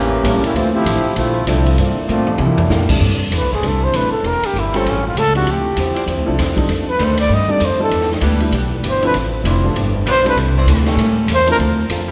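This joyful, brassy big band swing excerpt at 196 BPM opens with a brilliant, tight trombone section taking a short solo over woody pizzicato upright bass and a dark, clean hollow-body electric guitar. A warm grand piano and a distant, roomy drum kit with a boomy kick soon join, and the drums play a fill at 2.1 seconds. At 3.0 seconds the music settles into C major as a breathy, whispered trumpet with light vibrato takes an intimate solo, backed by a clear saxophone section holding sustained chords in the background, all inside the wet reverb of a concert hall.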